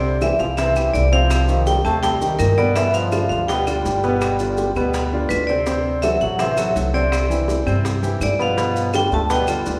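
Bright, ringing vibraphone with fast motor vibrato carries the melody in this danceable, sophisticated Afro-Cuban jazz excerpt, over a clear trombone second line in the background, an intimate grand piano with deep bass and audible action noise up front, a thumpy, dark upright bass plucked on gut strings, and tight high-tuned bongos, woody claves and grainy maracas joining at 0.2 seconds, all set in a reverberant recital hall.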